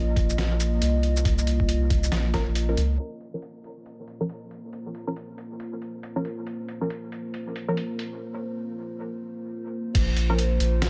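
Dry and low-pass filtered, this dark, heavy deep dubstep excerpt in Bb minor moves at 138 BPM with a swung half-time feel, as a moody, detuned analog pad with chorus and phaser holds sustained chords throughout, a gritty, compressed, pitched-down sampler-style kit of snare, hi-hat, shaker and crash runs alongside a thumpy electronic kick that drops out at 2.4 seconds and returns briefly at 9.9 seconds, and a round, up-front sub bass drops out at 3.0 seconds and returns at 9.9 seconds, while a muted sawtooth chord stab with chorus and dub echo enters at 2.3 seconds and, along with the pad, is swept by a filter through the middle, with a short break arriving toward the end of the sweep.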